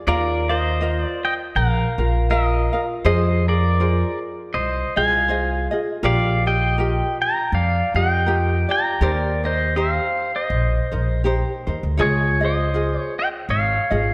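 An electric pedal steel guitar carries the melody up front in this languid, dreamy Hawaiian excerpt, its clean, compressed tone shaped by fingerpicks, slide and volume swells. Beneath it, a light acoustic ukulele is fingerpicked with a warm, gentle touch, sitting lower in the mix as accompaniment. An upright bass, also up front, is plucked pizzicato on steel strings, giving a woody, growly low end with a bright edge. The unhurried pulse carries a mild swing, and the harmony drifts through soft, open chords with sixths, sevenths and added tones, settling on a fresh chord at 12.0 seconds as the opening section begins again. A moderate concert-hall reverb wraps the trio in a spacious, hazy glow, and the passage is cut from a longer piece, ending at 14.1 seconds.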